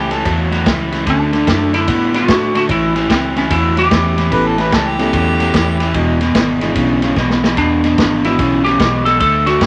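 A moderate large-studio reverb gives this short cut from an electric blues shuffle a roomy, vintage sound, with a swaggering, laid-back mood at 148 BPM in 4/4, swung eighths and A mixolydian. An up-front, compressed overdriven guitar plays the riff over a dark, round, foam-muted fingered bass and a vintage acoustic drum kit with a punchy kick, medium-tuned snare and a dark ride cymbal. At 1.1 seconds a twangy, slightly broken-up lead guitar takes the melody and sits highest in the mix. A clear harmonica with vibrato, tongue slaps and scooped jazz-style notes briefly sounds at the very start and then adds a second line from 4.3 seconds, while a reedy, clean electric piano plays accompaniment there as well. A drum fill arrives at 7.2 seconds as the chords move through A, D, A7 and E7.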